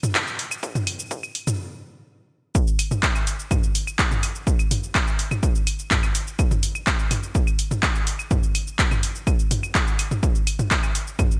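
A straight 4/4 techno pulse at 125 BPM drives this hypnotic, dramatic excerpt, where a punchy, up-front electronic kick with a high-pass filter anchors a dry analog drum machine of claves, handclaps, hi-hat, shaker and toms dressed in gated reverb, all under bright 1980s-style digital production with light reverb, as a short build-up halts at 1.6 seconds before the drop lands at 2.5 seconds.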